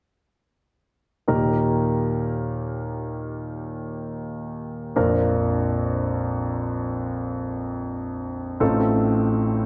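A clear concert grand piano sits up front in this short, tender pop passage, entering at 1.3 s and playing through to 9.7 s as the sole accompaniment. It moves in free time in Eb major, its natural tone reaching from a deep bass register up into the middle of the keyboard. The harmony travels from Eb to Bb at 5.0 s, then settles on F7/A near the close. A wet recital hall reverb with a 1.5-second decay surrounds the instrument, lending the heartfelt mood an intimate sense of space. The passage is cut from a longer piece and feels like a brief, gentle thought.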